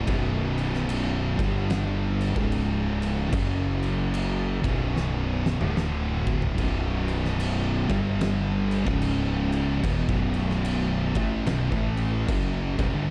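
Round, punchy fuzz bass sits up front in this ominous, brooding stoner and doom metal excerpt at 74 BPM in B minor, with swung eighths under a riff played by two thick fuzz guitars in the background and a bright, scooped, double-tracked high-gain guitar, while an oversized low-tuned acoustic kit with a boomy kick, fat snare, dark cymbals and a gritty, pumping big-room sound plays a fill from 4.9 to 6.6 seconds in a dry production.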